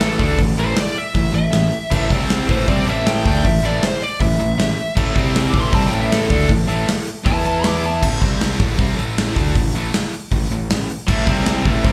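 Hard rock at 157 BPM in A minor, this driving, heavy passage is cut from a longer piece and captured live through a club PA with light reverb. A dark, smooth lead guitar with overdrive, slapback and tape echo carries a solo melody from the start until 8.0 seconds, ranging from A4 to D6. Beneath it, a bright cranked stack guitar with spring reverb and slapback plays the riff, dropping out at 8.0 seconds and returning briefly at 11.1 seconds, while a second overdriven, picked electric guitar also plays a riff in the background throughout. A punchy fuzz bass, direct and amped, anchors the low end from A1 to E2. Up front, a gated 80s drum kit with a polished stone-room sheen, bright cymbals and a medium-tuned snare powers the chords, which cycle between A5, C5 and Am with an E5 push into the second section.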